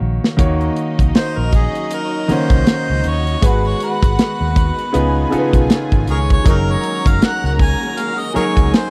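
Silky and bittersweet, this short cut from a lush 1970s-style soul piece moves at an unhurried pace with a gentle swung sixteenth-note feel. A drum fill on the up-front acoustic kit opens the passage, and the kit goes on with a punchy kick, a medium-tuned snare and hi-hat under a rolled-off top. A dark, foam-muted fingered electric bass with a round, amped tone and a clear, natural grand piano carry the accompaniment through a minor-seventh progression that settles on a Gb69 chord. From 0.4 seconds, a close violin section adds a floating, pure second line played sul tasto, while a distant, very quiet string section holds sustained chords with vibrato and portamento. The harmonica enters at 1.2 seconds with a roomy, jazz-style solo full of scooped notes, tongue slaps and light vibrato, and a slapback echo trails its phrases. The recording itself is dry and close, in the manner of a 1970s studio.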